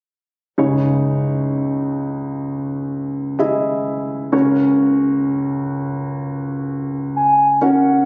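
This pop ballad excerpt moves at a slow 64 BPM in 4/4 with a heartbroken, emotional mood. A clear, intimate grand piano carries the accompaniment from 0.6 s, its action noise audible up front, moving from C#madd9 to F#/C# at 4.3 s. At 7.2 s a hollow, woody clarinet-like synth lead with chorus and vibrato enters briefly, high and dark, all set in a moderate recital-hall reverb and captured on a phone in the room, giving a dull, muffled top end.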